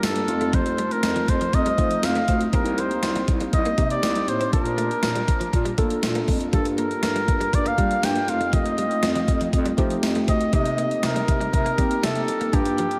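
Nostalgic and moody, this 1980s-style pop passage in a straight 4/4 is cut from a longer piece and drifts through a dreamy mix soaked in cathedral reverb. A clear, up-front flugelhorn carries the melody in a pop style with light vibrato and a touch of delay, ranging from G4 to G5. Beneath it, a tine electric piano plays the accompaniment through a combo amp with medium tremolo, while a dark, soft-attacked bass clarinet holds down the bass line with a vintage, classical character. A bright, twangy clean electric guitar, recorded direct and compressed, picks a very quiet riff low in the mix. The overdriven electronic drum machine sits up front with a thumpy kick, gated-reverb snare, hi-hat and tambourine, re-recorded in a small room, as the harmony moves from F7 through Cm7, Bbmaj7 and Gm7 before returning to F7 at 8.3 seconds.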